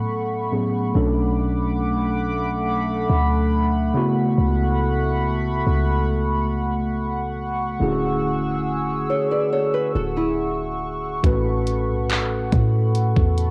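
A worn, slightly out-of-tune tine electric piano opens this smooth, romantic contemporary R&B excerpt in A major at 70 BPM, carrying a cassette-tape tint. Alongside it, a shimmering, retro pulse-width pad sits up front with soft, sustained, detuned chords and chorus, while a deep, boomy 808-style bass with a fast attack and mellow decay anchors the low end. The harmony moves from A69 through Bm7 and A69/C# to Dmaj9#11 before returning to A69. At 9.1 seconds a small, fingerpicked nylon-string guitar steps forward with brief arpeggios coloured by tape echo, and it stops at 11.2 seconds, when an electronic, produced R&B drum kit arrives with a knocking kick, warm hi-hats and handclaps, re-recorded in a small room and placed up front. Light reverb and a home-cassette quality round out the recording.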